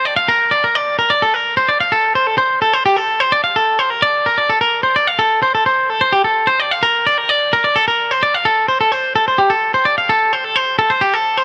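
A twangy electric guitar opens this short rock excerpt and carries it for its full 11.4 seconds as the lone part. The pulse counts at 257 BPM in eighths, grouped in an uneven 7/8 with a straight feel, which gives the line a restless, intricate character. The guitar stays in an upper register between G4 and F5, its clean, picked tone tightened by compression and placed up front. A light reverb gives the sound a little space. The passage is cut from a longer piece and holds to a single section throughout.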